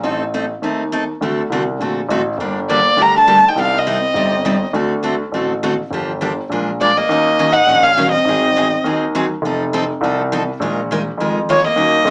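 Acoustic string swing in the jazz manouche style, this fiery, virtuosic excerpt races along at 204 BPM in 4/4 with a swung feel, opening in G minor and shifting to Eb minor at 7.1 s. A picked dreadnought guitar with fresh strings and finger squeak keeps up the accompaniment in the background, while a grand piano carries the low bass line throughout. An expressive bowed violin sits up front with vibrato, portamento and a soft attack, its phrases entering at 2.7 s, 6.8 s and 11.5 s alongside a bright, full-bodied jumbo guitar second line, all heard through moderate studio ambience with a small-speaker tone.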